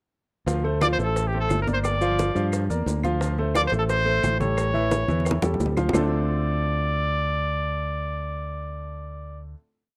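A punchy, clear trumpet leads this fiery, driving salsa piece in D minor at 176 BPM, playing a motif-based melody of call phrases with scooped notes up front, while a dark, round fingered electric bass plays a tumbao that anticipates the chords and a polished concert grand piano with short sustain plays a montuno in octaves. Congas with slaps and open strokes, tight high-tuned bongos in steady eighths with hand bell and woody claves on a two-bar time line sit behind them, joined by grainy maracas, all ending after a drum fill from 5.1 seconds. The band lands on a final D minor seventh chord at 5.9 seconds in a dry, close 1970s-style studio sound.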